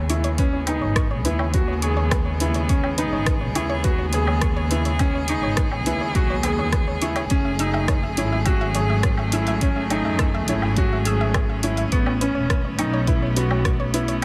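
A warm grand piano riff with tape echo leads this intimate, melancholic piano-and-strings electronica in C# minor at 104 BPM, set over sustained chords from a rich, nasal string quartet, a bright, bowed double bass section and a soft, round pluck tracing dark arpeggios in the background with chorus and tape echo, all three of which pulse with sidechain pumping, while a punchy electronic kick and a deep house kit of dark hi-hats, rim clicks and woodblock keep time as the harmony moves through C#m7, F#m7 and Aadd9 in light reverb.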